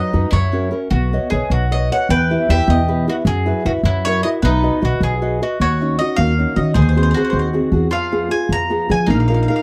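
A picked mandolin carries the melody from the opening moment, its doubled strings giving a round, warm tone, while a bowl-back mandolin plays a lower second line beneath it and a small, bright nylon-string guitar is fingerpicked on fresh strings. This is a lively, sunny Italian folk serenade in 6/8, moving at 103 beats per minute counted in dotted quarters, with a straight feel. A pizzicato upright bass joins at 0.1 s, sitting up front with a woody, thumpy gut-string sound that is dark. The first section stays in B major over chords such as Badd9, Em and F#7. At 5.6 s the music turns to Eb minor, with harmony shifting through Ebm7, Ab7/Eb and Fdim before coming to rest on a suspended Bbsus4. The close, dry 1970s-style studio sound carries little reverb, and the passage is cut from a longer piece.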